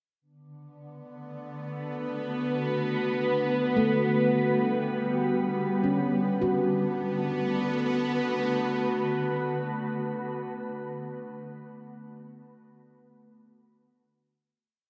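Ambient, melancholic and reflective, this short, complete piece drifts in free time through a vast, echoing cathedral-like space. A string-like drone with a tense, detuned sawtooth edge, a noise layer, vibrato and a phaser enters first at 1.1 s and holds one bright note, sitting low in the mix. Just after, a glassy, ethereal FM pad fades in up front with slow attacks and long releases, its mellow, chorused chords shifting from Bm7 to Gmaj7 and back to Bm7. At 3.8 s a meditative stainless-steel handpan joins with ringing arpeggios played with sharp finger strokes, two slow loops of unequal length drifting against each other through a diffuse delay. The pad's closing Bm7 becomes a long final chord, and the handpan rings on alone briefly before the piece ends at 10.6 s.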